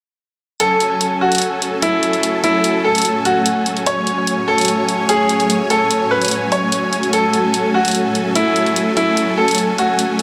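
A lush hall reverb wraps this short, aggressive cut of heavy wobble dubstep in a half-time feel, where a bright, up-front baby grand piano carries the melody through a digital delay over huge detuned supersaw chords and a layered electronic hi-hat recorded in a large room. From 1.7 seconds a cloudy, evolving granular pad with its own reverb blurs in beneath, thickening the single F#madd9 chord that holds throughout.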